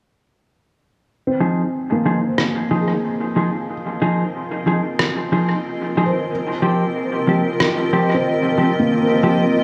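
Drenched in a huge ambient reverb with an 8.2-second tail, this meditative, deep ambient dub fragment in F minor moves at 92 BPM in a straight 4/4. A felt-muted upright piano opens at 1.3 s with soft, intimate arpeggios through a low-pass filter and dub echo. It is joined by up-front, clean stabs from a mellow electric guitar carrying a filter sweep, and by a muffled, pitched-down electronic rim click that echoes as if re-recorded in a large room. From 3.2 s a cloudy, evolving granular pad fades in with bright, detuned sustained chords, as the harmony shifts from Fm7 to Eb69 at 6.3 s.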